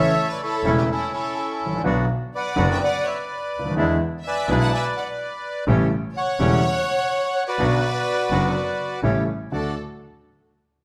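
A moderate, large studio reverb surrounds this tango excerpt, played live by a band in one room. The mood is elegant and nostalgic, with a rubato feel in 4/4. A reedy, bright, airy bandoneon carries the melody up front, while a second bandoneon adds stabs beneath it. A close, focused violin section plays a bowed second line with vibrato, and a polished grand piano, present and up front, supplies the accompaniment. A single bowed double bass with vibrato and a smooth top anchors the low end. All parts play together throughout, and the harmony moves through A, Bm, E7 and A7 before settling on D at 9.5 seconds as a new section begins.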